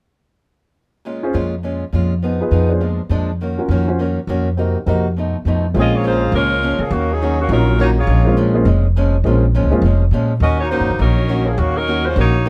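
A swung 4/4 at 206 BPM drives this sultry big band swing fragment in Bb minor, with a woody, pizzicato upright bass sitting up front beside a boxy, picked archtop guitar whose finger squeaks come through, and a polished, present grand piano that plays until 9.8 seconds. A mellow saxophone section carries the melody from 5.8 seconds, distant and roomy with light vibrato, returning at 10.4 seconds over minor seventh chords such as Bbm7 and Ebm7. The close, detailed sound keeps the room dry.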